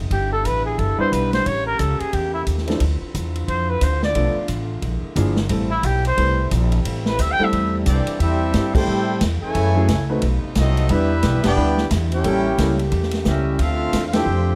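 Sultry and dramatic, this big band swing excerpt opens with a mellow, distant solo trumpet carrying the melody over a woody, thumpy upright bass, a swinging drum kit with a punchy kick, warm grand piano accompaniment and a dark saxophone section holding tight sustained chords in the background. At 7.9 s the solo gives way to a clear, smooth-topped trumpet section on the melody, joined by a vintage-toned trombone section with light vibrato on a second line. Band accents strike at 8.7, 11.4 and 14.1 seconds, all wrapped in light reverb.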